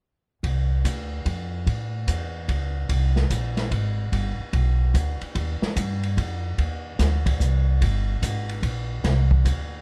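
A moody, cool jazz groove in C minor opens at 0.4 seconds with upright bass and an open jazz drum kit entering together, a brief cut from a longer small-group swing and bop piece. The tempo sits at 146 BPM in 3/4, with a swung eighth-note feel that gives the waltz time a loping lilt. The plucked bass is woody and thumpy, its gut strings giving a dark tone that moves between G1 and A2 and sits up front in the mix. The drum kit brings hi-hat, kick, ride cymbal and a medium-tuned snare, with smooth, dusky cymbals and a boomy kick heard in a small room, also placed close to the listener but a little quieter than the bass. The dry sound keeps both instruments intimate as the passage moves into a second section at 5.4 seconds, the drums stopping at 9.6 seconds and the bass at 9.8 seconds.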